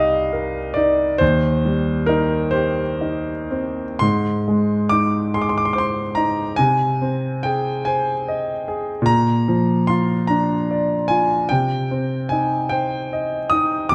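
A clear concert grand piano, up front and natural, carries this tender, nostalgic romantic nocturne on its own from 0.0 to 13.9 seconds. The piece moves slowly in 12/8, at roughly 38-52 BPM counted in dotted quarters, with a flexible rubato feel that lets the phrases breathe. The playing spans C2 to Eb6, and the deep bass gives the low register a rich foundation. The harmony begins on Cm7, passes through Cm/Eb, Ab, Ab/C and Bb, and comes home to Cm at 11.5 seconds. A wet recital hall reverb with a 1.5-second decay surrounds the instrument, and the tuning sits at A4 = 441 Hz in this passage cut from a longer piece.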